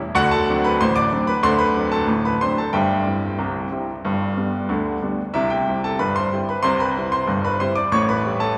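Heard in a church or concert hall, this short cut from a longer piece is bathed in a wet church reverb with a 3.5-second decay, giving the notes a long, ringing halo. At its center sits a clear baby grand piano, placed up front with a polished, present tone, playing solo for the full 8.6 seconds across a range from G1 to D6. The style is ragtime in C major, set in 2/4 at 93 BPM with a straight feel and tuned to A4 = 441 Hz. The mood is jaunty and cheerful, and the harmony moves from D7 through C/G, G and C before landing on A7 near 7.9 seconds. The clear, polished character of the instrument, set against the cavernous space around it, gives the brief passage a lively yet resonant quality.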